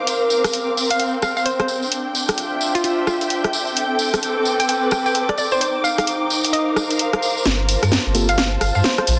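A hollow, detuned square-wave pluck with chorus and delay carries the melody over dark, veiled con sordino strings that pump under sidechain, skippy two-step UK garage drums with a cracking, softly clipped snare and bright hats, and a jingly tambourine, all set in a wet hall reverb, until a build-up and drum fill at 7.5 s bring in a round, tube-saturated dub sub bass, a very quiet tight electronic kick and a brief filtered tine electric piano stab at 8.1 s in this late-night excerpt.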